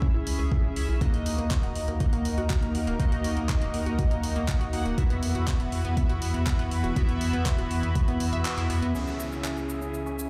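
Over a straight 4/4 groove, an up-front, tape-warm electronic kick anchors this short progressive house cut, joined from 0.3 seconds by a layered deep house kit of cabasa, handclaps and hi-hat, while a band accent at 8.4 seconds marks the moment the kick drops out until the close of the first section. A round, nasal analog bass with a dark filter pluck pumps against the sidechain beneath a glossy, retro chorused polysynth playing stabs through digital delay. In the background, a warbling analog pluck spins arpeggios with vintage 12-bit sampler grit, chorus and delay, its filter sweeping through the opening section. A lush, detuned unison pad eases in at 1 second with sustained chords as the harmony moves from C#m to D#m and on to Esus2, giving the piece a bittersweet, dreamy glow. As the music returns to C#m, a background downlifter arrives at 8.9 seconds and a very quiet, glassy texture of drifting overtones surfaces, all set in light digital ambience with a large studio reverb.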